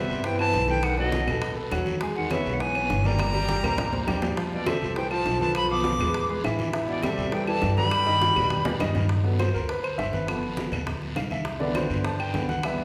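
Set in the lush reverb of a recital hall, this sunny, danceable Afro-Cuban jazz clip moves at a brisk 203 BPM in straight 4/4. A reedy silver flute with vibrato carries the melody up front while a breathy, mellow tenor saxophone adds a low second line with scooped notes, both stopping at 8.8 s, over a warm baby grand piano, a woody pizzicato upright bass, and a background bed of tight high-tuned bongos, low-tuned congas, claves and a raspy, vintage-sounding guiro. At 9.1 s the music settles into G major as the piano takes a solo with long, natural sustain.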